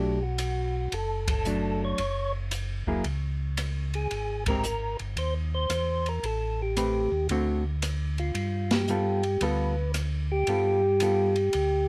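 This short, greasy soul jazz organ trio excerpt opens with a percussive tonewheel organ carrying the melody, a hollow-body jazz guitar accompanying and a second, mellow tonewheel organ handling the bass. An open jazz drum kit joins a moment later. The groove sits at 113 BPM in 4/4 with a swung eighth-note feel. The lead organ has a round, dark tone with third harmonic percussion and a slow rotary speaker. The bass organ adds vibrato and key click through its own slow rotary speaker. The clean, fingered electric guitar sits up front, while the small-room drums bring a boomy kick, dark cymbals and a rolled-off top under light reverb. The harmony moves from Bm7 through F#5, Abmaj9, Am9 and D7 to G9, and the whole band hits accents at 1.2, 4.4 and 8.6 seconds for a soulful lift.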